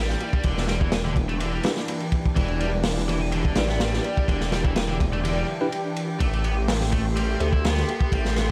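Breakbeat excerpt in E minor at 125 BPM with an energetic, raw mood, driven by a crunchy, gritty breakbeat kit with dark cymbals and a tight kick sitting up front with a menacing detuned saw bass, while a scooped, double-tracked high-gain guitar riff runs through delay, a lush chorused and phased unison pad pumps under sustained Em7 and Am7 chords, and a bell-like tine electric piano with 12-bit sampler grit adds background stabs from 1.6 to 7.5 seconds, all set in an echo-heavy small-room mix with vinyl crackle.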